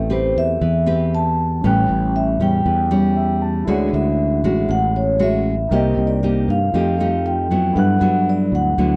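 A dry, close recording with a 1970s studio character and light reverb frames this smooth, wistful bossa nova, cut from a longer piece in a straight 4/4. Played with soft mallets, the vibraphone carries the melody up front, its metallic, ringing tone made mellow by a slow motor vibrato and a boxy small-room quality. Beside it, a full-bodied, fingerpicked nylon-string guitar gives the accompaniment a deep classical flavour. A sustaining fretless electric bass sits up front with a growly, punchy, amped sound, while a grand piano with long sustain stays in the background and steps forward for a brief fill between 2.9 and 3.7 seconds. The harmony drifts through lush extended chords, from Am9 and A13 to Dmaj9#11, then Cm7 and F9 before settling on Gmaj13.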